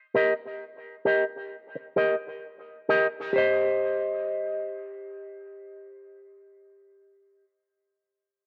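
A straight 66 BPM reggae pulse in 4/4 carries this hypnotic, deep fragment in C minor, where a clean, twangy, picked electric guitar with an envelope filter and dub echo sits up front as accompaniment from 0.1 s, moving from Eb to C minor at 3.3 s in a dry, close 1970s-style studio sound touched with light reverb and digital ambience.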